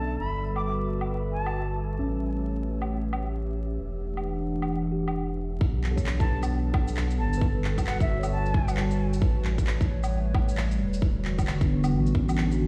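This dry mix carries a coat of vinyl crackle and sounds as if it is played through a big sound system in a bare stone room. It is a nocturnal, rainy future garage piece at 133 BPM in 4/4, swung on the sixteenths in B minor, cut from a longer track, with chords moving through Gmaj9, A9, Em9 and Bm7. A warbling, nostalgic, lo-fi pad holds sustained chords throughout with chorus, reverb and sidechain pumping. Beneath it, a deep, round sine sub bass sits up front with tube saturation and the same pumping. A mellow, clean tine electric piano accompanies from the background with analog delay, while a faint, breathy wind-like noise layer drifts until 5.6 seconds. Filtered electronic woodblock, handclaps and shaker enter early, a tight kick drum arrives up front at 5.6 seconds, and a distant, airy concert flute with vibrato and tape echo offers brief tongued phrases, returning at 6.2 seconds.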